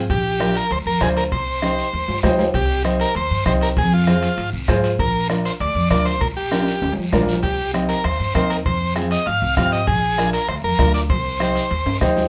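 A buzzy, vintage combo organ sits up front, carrying the melody with a light vibrato and a clean tone in this fiery, danceable cumbia cut from a longer piece. Underneath, a thumpy upright bass with gut strings plays pizzicato in a low, woody register, while a clear upright piano adds intimate, polished accompaniment from 0.4 seconds, its action noise audible and its notes ringing with long sustain. The percussion stays in the background: a soft-beater bombo in a live room, bright thin-skinned congas played close, a raspy, band-limited guiro, and ringing metal-shell timbales in a small room. The groove moves at a quick 196 BPM in straight 4/4 in C minor, cycling through Bb, C minor and F minor, with drum fills around 1.6, 6.5 and 11.9 seconds marking the phrases. A moderate studio reverb ties the ensemble together.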